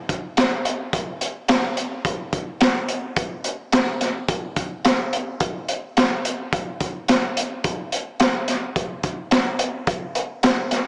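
Rock drum break with a hypnotic, hazy mood, cut from a longer piece and carried entirely by a crunchy breakbeat kit of hi-hat, kick drum and high-tuned snare playing a straight 4/4 feel. The acoustic kit sits up front, saturated and gritty with a punchy kick, a dark, rolled-off top and a smooth small-room character. A long, wet plate reverb and a small-speaker sound add to the hazy, hypnotic atmosphere.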